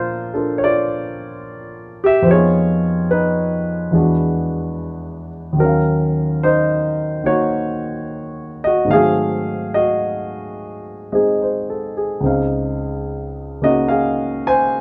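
A smoky, wistful jazz ballad in Bb minor at 72 BPM with a gentle swing, played by a single concert grand piano that sits up front with a warm tone, deep bass and short sustain, moving through rich chords from Bbmaj7 to Dbmaj9 over 14.8 seconds in a dark production with moderate studio reverb, tuned to A4 = 435 Hz and cut from a longer piece.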